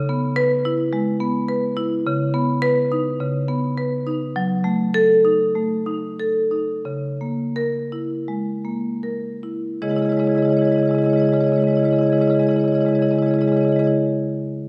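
A solo marimba sits up front in a wet recital-hall reverb, its rosewood bars sounding woody, bright and percussive under medium hard mallets. This reflective, flowing contemporary classical piece, cut from a longer work, moves through rich minor harmonies in a straight four, slowing down between 3.2 and 9.8 seconds before a new section begins.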